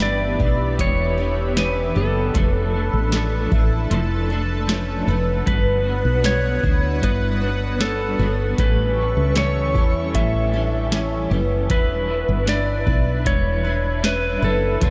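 Soaked in a wet cathedral reverb with a soft, dulled top end, this dreamy and blissful dream pop excerpt floats in a straight 4/4 over a chord cycle that moves from Em7 through Dm/F, Gmaj7 and A7 before settling back on Em7. A clean, dark lap steel carries the melody with fingerpicks, slide and volume swells, trailed by analog delay. Beneath it, a booming analog drum machine with a deep kick, crisp snare and metallic hats sits beside a round, woody fretless bass that sits up front. A picked twelve-string acoustic guitar with old strings adds shimmering, octave-doubled arpeggios through lush chorus and delay, while a slightly broken-up, compressed electric guitar pulses with tremolo and ensemble chorus. A swirling, nasal sawtooth pad holds sustained chords through phaser and chorus, and a very quiet, mellow vibraphone with soft mallets and fast motor vibrato rings briefly at the start, then returns at 8.6 seconds.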